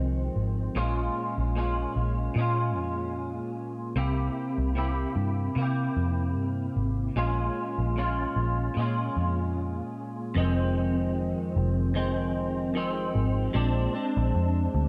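A light reverb gives this hazy, lonely fragment of bedroom-leaning indie pop in F minor a soft haze at a slow 75 BPM with a gentle sixteenth-note swing, as an up-front, twangy, scooped clean electric guitar shimmers with ensemble chorus and vibrato over a dark, round, foam-muted vintage picked bass, the chords moving from Fm7 through Bbm7 and C7 before a new passage at 10.4 s returns to Fm7 and settles on Bb9.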